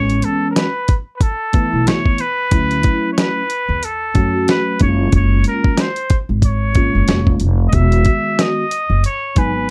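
A dark, lightly reverberant jazz-hop excerpt at 92 BPM with a swung 16th-note feel, where a nasal, straight-muted trumpet carries the melody up front over a mellow, chorused tine electric piano playing Amaj9, Dmaj9, F#maj9 and Emaj9 chords, a woody, growly pizzicato upright bass, and a gritty, compressed sampler-style drum kit with a thumpy kick and fat snare, giving a cool yet warm mood.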